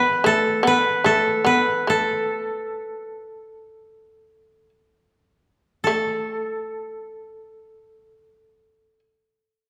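A fingerpicked, woody koto melody and a buzzing, percussive plectrum-plucked shamisen line beneath it open this calm, austere fragment of Japanese chamber music together, moving in a free rubato between 51 and 78 BPM, slowing through the first 5.9 seconds before a new section begins, with the dry koto sitting up front while the recording rings out in the lush reverb of a recital hall.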